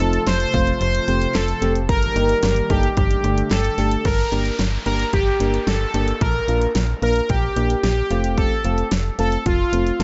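Echo-heavy and dark-toned under light reverb, this driving, melancholic synth-pop clip in G minor at 111 BPM sets a bold, brassy analog synth lead with chorus and dub echo over round, warbling electric-piano-like synth keys, a smooth detuned pad that drops out at 4.0 seconds, a snappy, metallic slap-like FM bass, and a punchy pop drum kit of kick, fat snare, hi-hat and handclaps steeped in dub echo, while a faint downlifter sinks in the background from 4.1 to 8.4 seconds as the chords move from F through Gmadd9 to Bb.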